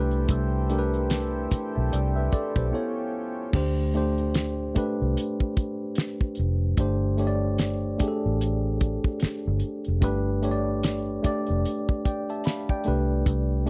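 A dry, close 1970s-style studio sound frames this sultry, introspective neo-soul R&B excerpt at 74 BPM in a swung 4/4, where a worn, slightly out-of-tune tine electric piano accompanies up front, a reedy accordion holds rich sustained chords until 3.5 seconds, a round, foam-muted fingered electric bass punches out the low end, and a damped 70s drum kit with a fat snare, tight kick, hi-hat and crash drives the groove, with a break at 2.7 seconds.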